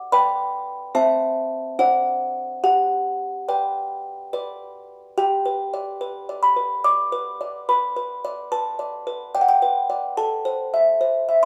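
Dreamy and tender, this classical lullaby in 3/4 is carried by a solo music box, its delicate, tinkling plucked tones sounding mellow, airy and slightly out of tune, set up front in a moderate stone room reverb. The opening phrase moves through gentle changes such as G/B, Am/C and D7 before resolving to G. A second passage begins at 5.2 seconds and drifts toward Bm7 and Am, the fragment cut from a longer piece.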